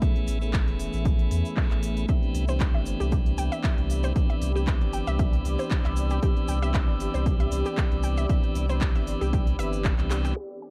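A punchy, tape-warm electronic kick sits up front in this sunny deep house excerpt at 116 BPM. Its lightly swung 4/4 groove is filled out by crisp, layered handclaps and hi-hat, a grainy egg shaker in the background, and a deep, full sine-and-triangle sub bass with tube saturation. Over Amaj9 moving to Cmaj9, a lightly overdriven tonewheel organ plays piping, key-clicking stabs through a stopped rotary speaker and tape echo, while a cloudy, evolving granular pad drifts in the background; a round, detuned analog pluck arpeggio with chorus enters at 2.1 s, and a warbling, nostalgic lo-fi pad adds sustained chords from 3.4 s. The organ, bass, pluck and both pads pump against the kick inside a cassette-tinged, low-pass-filtered sheen, and a drum fill with a band accent lands at 10.1 s.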